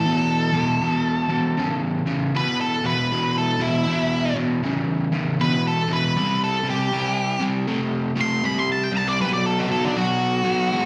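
Heard through a live club's PA with light reverb and a digital ambience, this short cut from a longer rock piece has a smoky, gritty mood at 79 BPM in 4/4 with a swung eighth-note feel, centred on E minor. A bright, crunchy overdriven guitar, double-tracked and up front, plays the riff in its low register with slapback echo, while a dark, picked octave-fuzz lead guitar carries the melody from D4 to C6, thickened by distortion, slapback and tape echo. Both guitars play throughout, moving through E5, C5 at 6.2 seconds and B5 at 9.2 seconds.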